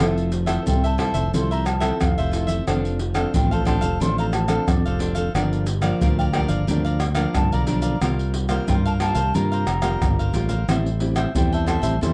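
Joyful and festive, this 90 BPM samba and choro excerpt in F major sets a crisp picked cavaquinho and a fingerpicked classical nylon-string guitar over a punchy, overdriven fingered electric bass and up-front percussion of tight surdo, pandeiro, tamborim and maracas played with soft hands, while a mellow, airy wooden baroque flute, distant and expressive with vibrato, enters at 0.7 seconds over Fmaj7, Dm7/F, Gm7, C7sus4 and Am7 in a dry, close 1970s-style studio sound.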